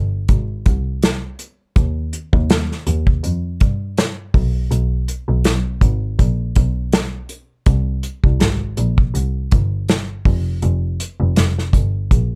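Indie pop with a bedroom pop intimacy, this short cut from a longer piece feels dreamy and laid-back, moving at 81 BPM in 4/4 with a gentle swing on the sixteenths. A bright, focused double bass opens at 0.0 seconds, bowed by a single player with a touch of vibrato and sitting up front in the low register. Just after, at 0.3 seconds, an acoustic drum kit joins, played with bundle sticks in a small, airy room. Its punchy kick, medium-tuned snare and hi-hat sound polished and close. The overall production is dark and dry, with little reverb, keeping the bass and drums intimate through to the end at 12.4 seconds.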